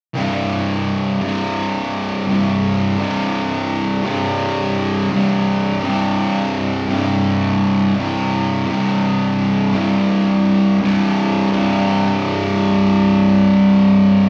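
Brooding and hypnotic, this short metal excerpt cut from a longer piece moves at a steady 84 BPM in straight 4/4, driven by a single fuzz guitar riff sitting low between C2 and C3, starting on a C5 power chord. The electric guitar is bright, picked and double-tracked, its fuzzy distortion placed up front, and the riff shifts into a new section at 11.5 seconds before the clip ends at 14.3 seconds. It sounds like a live gig heard through the venue's PA, with club reverb and a light digital ambience around it.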